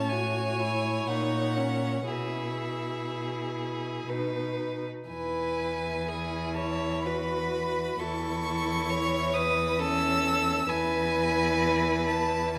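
A clear first violin carries the lyrical melody high above the group, its bowed line even and shaded with a light vibrato. This tender, slow romantic movement for string quartet sits in E major and 3/4 at 57-68 BPM, with a rubato feel that lets each phrase breathe. Close beneath it, the second violin sings its own line with vibrato, while a rich viola sits farther back with the accompaniment. The cello anchors the bass up front, its focused tone carrying a smooth top. The harmony moves from Amaj7 through F#/A# and E/B to B before settling on E, and a wet recital hall reverb lends the players a spacious glow across this 12.6-second passage cut from a longer piece.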